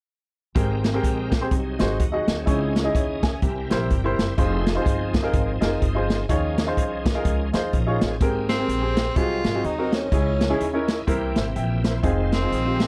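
A dry, close recording with a 1970s studio character and little reverb opens this soulful, reverent uptempo gospel passage, cut from a longer piece and swinging in 4/4 at 126 BPM in Ab major. A boomy-kicked big-band drum kit sits up front with its hi-hat and medium-tuned snare, while a dark, thumpy pizzicato upright bass with steel strings anchors the low end. An intimate, polished upright piano accompanies with woody presence and audible action noise, and a bright, shouting tonewheel organ holds full sustained chords through a slow rotary speaker and chorus vibrato. The organ steps forward with a fill at 7.5 seconds, and a clear, jazz-style tenor saxophone enters at 8.5 seconds to carry the melody through to the end at 12.9 seconds. The harmony moves from Abmaj9 and Ab7 through Dbmadd9, C7 and Fm7, touching Eb9sus4 before the progression returns.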